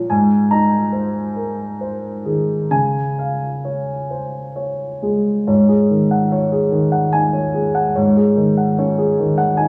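Peaceful and hopeful, this brief fragment of neoclassical minimalist piano features a solo grand piano, dark, mellow and up front, moving in an unhurried rubato 3/4 through Abadd9 and Db chords before turning to Ab7sus4 at 5.5 seconds, all set in a wet 1.2-second studio reverb with a touch of small-room ambience.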